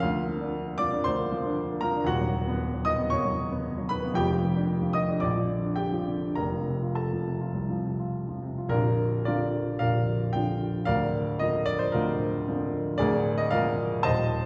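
A solo baby grand piano opens this hopeful romantic character piece in Bb major, its warm, natural tone carrying a short sustain and sitting up front while a wet recital hall reverb places the listener further back in the room. Moving in 4/4 with a rubato feel between 99 and 118 BPM, the playing travels from Bb/D through B/D# and Fsus2 before settling on Bb and F, then a new phrase at 8.7 seconds returns to Bb and closes on Bb7/D. The fragment, cut from a longer piece, spans the range from Bb0 to D#6 across its 14.5 seconds.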